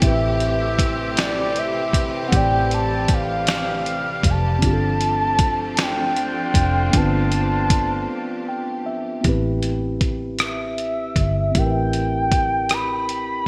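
A gritty, sampler-style soul drum kit sits up front with a thumpy kick, fat snare, rim click and hi-hat under gated reverb, driving this slow, yearning and sultry six-eight R&B excerpt in A minor at 52 BPM, opening on an Am9 chord. A round, horn-like sawtooth synth lead with a soft attack, filter sweep and vibrato sings the melody through chorus, phaser and delay, over a clean tine electric piano, a dark, foam-muted fingered bass, lush bowed studio strings and tight vintage jazz-style horn stabs echoing with delay. The horns drop out at 8.8 s, and the electric piano fills a break from 8.1 s until the strings fall away at 9.2 s, all bathed in a lush hall reverb with bright 1980s-style digital polish.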